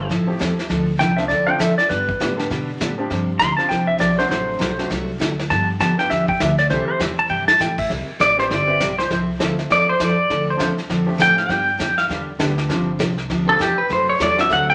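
Swinging and down-home, this western swing country passage moves at a brisk 200 BPM with a lilting swing feel. A twangy, scooped lap steel guitar takes the opening solo over a woody, thumpy upright bass, a bright, full-bodied dreadnought acoustic guitar, a slightly detuned upright piano with audible action noise, and a dark, smooth brushed drum kit. After a drum fill at 7.3 seconds, a compressed, up-front pedal steel guitar carries the melody from 8.2 seconds over a jazzy progression of chords like Fmaj7, Dm7 and G7sus4, all in a studio room with a wet reverb.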